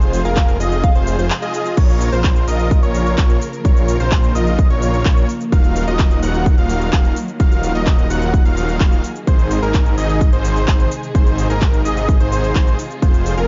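A dark, digital-ambience mix carries this emotional, euphoric excerpt of festival progressive house in Bb minor at 128 BPM: a soft, pure FM bell sounds briefly from 0.2 s, a punchy, up-front electronic kick enters at 0.4 s, and after a short break with a band accent the drop returns at 1.8 s. The harmony opens on Fm, then moves through Bbm and Ebmadd9 to Ab, with a huge, bright supersaw riff and a nasal, warbling vintage unison lead playing arpeggios, both pumping against the kick with delay and the lead tape-coloured, over a menacing, saturated detuned saw bass, an overdriven big-room kit of crash, claps, crisp hats and shaker, and distant bowed strings holding sustained chords in the background.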